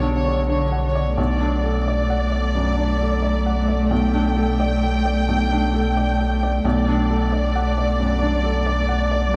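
Reflective and melancholic, this neoclassical piano-and-strings excerpt drifts in B minor at 88 BPM in 4/4 with a rubato feel, moving through chords of Bmadd9, Bm7 and Gadd9/B across its 9.4 seconds. A muted chamber violin section carries the melody with veiled, distant vibrato, while a single con sordino cello bows a dark second line beneath, and a felt-muted upright piano adds intimate accompaniment where its thin felt and audible action noise can be heard. Underneath, a round, sine-like sub bass holds a sustained B1 up front, and the whole is set in a vast, echoing space with a long, wet cathedral reverb.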